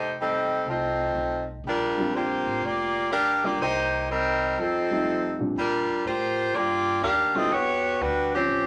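A bright, tight saxophone section carries the melody up front from the very start of this energetic big band swing passage, over a woody pizzicato upright bass, at 123 BPM in Bb major with a swing feel. A dark, mellow grand piano with audible action noise and short sustain adds accompaniment from 2.0 to 7.5 seconds. A wet small-room reverb surrounds the playing as the harmony moves from F9 through Cm7 and F7 before turning to an Em9 near the end of the cut.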